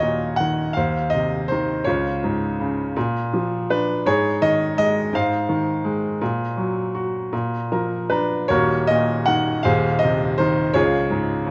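A dark, warm production with light reverb frames a bright, brilliant grand piano that sits up front with an open tone and short sustain. This reflective, melancholic classical piece for solo piano unfolds in Eb minor at 54 BPM in a rubato 6/8, its harmonies moving from Ebm through Db, Bb and a Gbmaj7#11 colour across a range from Eb1 to Bb5. A piano fill at 7.3 seconds leads back to Ebm at 8.5 seconds as the opening material returns in this short cut from a longer piece.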